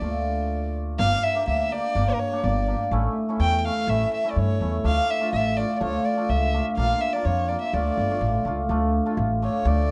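Bittersweet yet festive, this brief klezmer fragment in 2/4 moves with a straight feel. A dark, intimate violin carries the melody up front, its bowed line soft in attack with an airy bow, light vibrato and a touch of plate reverb. Beneath it, a hammered cimbalom supplies shimmering, ringing accompaniment, while a pizzicato upright bass with steel strings gives a woody foundation. The harmony moves from Dm through Gm, A and Bb before settling back on Dm, and at 8.7 seconds the violin steps forward into a solo as the piece turns toward a new section. A small, moderate room and a dark, warm production keep the sound close and mellow.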